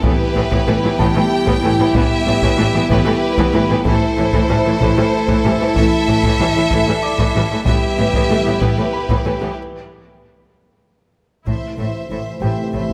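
Close, detailed microphones on a scoring stage with moderate reverb frame this relentless, futuristic slice of hybrid orchestral and electronic film score in 6/8, built over an Em/A harmony. A lush, focused violin section carries the melody above a smooth second violin line, expressive violas with portamento, a mellow French horn section and a shimmering, retro pulse-width pad with chorus. Clear cellos, woody double basses and compressed, saturated taiko drums struck with heavy sticks fill the low end, while a faint baby grand piano adds tape-echoed texture; the lead violins and horns drop out at 9.6 s for a break, a taiko fill arrives at 11.0 s, and the harmony settles on Am at 11.5 s.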